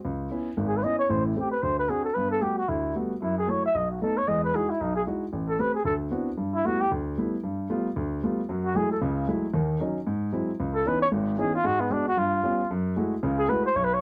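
Swung eighth notes in a brisk 4/4 give this relaxed, playful jazz excerpt its lilt, with a warm grand piano comping through rich seventh and ninth chords from the start and its action noise audible up close. At 0.7 seconds a bucket-muted trumpet enters on the melody, veiled, breathy and intimate, with a whispered soft attack and gentle vibrato that sit up front in the mix. The dry, close 1970s-style studio sound carries only a light reverb, and the passage is cut from a longer piece.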